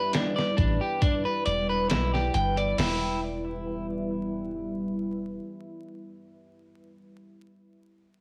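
A gritty, pitched-down sampler-style drum kit with a thumpy kick sits up front in this hypnotic, brooding trip hop excerpt at 68 BPM in E minor, playing until 3.0 seconds beside picked, slightly broken-up electric guitar arpeggios colored by analog delay and cassette tape. A deep, moody sawtooth pad with chorus and built-in reverb holds sustained chords moving from G6 to Em, while a soft, round 808-style bass with tube saturation enters at 0.6 seconds and a muted, felt-dampened upright piano melody stays barely audible. Light reverb, vinyl crackle and a home cassette sound frame the piece.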